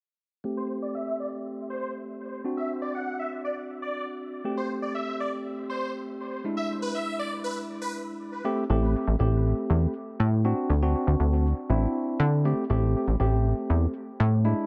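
A punchy, funky analog bass stands out most, its sawtooth-and-square plucks hitting with a fast attack and decaying up front once it arrives at 8.7 seconds. This is a driving, confident pop cut from a longer piece, moving at 120 BPM in a straight 4/4 and sitting in A dorian, with chords cycling through Am7, D7 and E7. A clean tine electric piano carries the accompaniment from the opening at 0.4 seconds, sounding as if through its built-in speakers, shaded by a low-pass filter and dub echo. Above it, huge, lush supersaw chords play the melody in detuned unison, bright and sustained with a moving notch from a phaser, plus their own low-pass filter and dub echo, before dropping out at 7.9 seconds. A filter sweep runs through that first section, and the second section hands the groove to the bass and electric piano. The mix is echo-heavy with light reverb.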